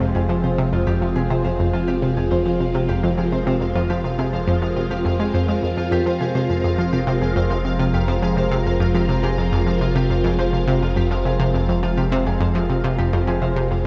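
Ambient, sequencer-driven space music in F minor at 104 BPM in a straight 4/4, this short cut from a longer piece feels expansive and hypnotic as it rests on a single Fmadd9 chord throughout. An analog pluck sits up front with a detuned sawtooth riff, its fast attack and decaying filter pluck given shimmer by chorus and delay. Alongside it, a phased string machine holds swirling, vintage sustained chords with a slow attack, its ensemble chorus and phaser lending a warbling, moving-notch character. A fingerpicked concert harp rings out arpeggios through delay, while a round analog bass anchors the low end with a deep, mellow square-and-sine tone that evolves through wave folding. High above, a faint pulsing gated texture of detuned triangle voices adds a tempo-synced shimmer with its own chorus and built-in reverb, and the whole production is dark and bathed in a moderate plate reverb.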